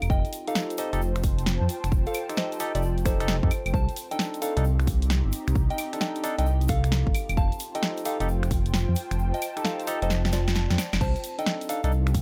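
A deep, rumbling detuned saw bass and a breathy, chorused pad open this moody, late-night two-step garage excerpt with swung house drums, a punchy up-front snare, a grainy egg shaker in the background and a mellow FM bell melody through delay, joined at 0.1 seconds by a punchy electronic kick and at 0.5 seconds by barky, amp-driven electric piano stabs, as the harmony sways between F9 and Cm69 until the kick drops out at 9.2 seconds, with a drum fill from 10.1 seconds leading to its return at 11.0 seconds.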